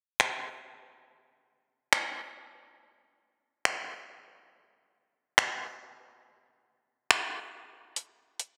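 A bright, 1980s-style digital sheen and a moderate plate reverb frame this short, blissful and dreamy hip hop cut, moving at 139 BPM in 4/4 with a half-time feel. A smooth, electronic R&B drum kit sits up front from 0.2 to 8.5 seconds, its finger snaps and metallic hi-hats carrying a tape-warm, produced character and a gated reverb.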